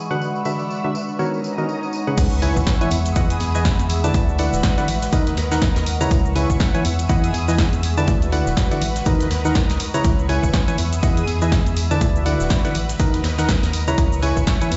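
Piano house at 122 BPM in C# dorian, energetic and bittersweet, where a hollow, up-front organ stab riff with chorus and delay rides over a silky analog string pad and a warbling, nostalgic tape-like pad, both pumping to the sidechain, with a background tambourine. A very quiet swell leads into the drop at 2.2 seconds, which lands with a very quiet impact as a dark organ-like FM bass, a punchy, tape-warm electronic kick, a punchy analog drum machine and a very quiet airy brush kit join, all set in large studio reverb and cycling through D69, Bmaj7, C#m7 and Emaj7 chords in this cut from a longer piece.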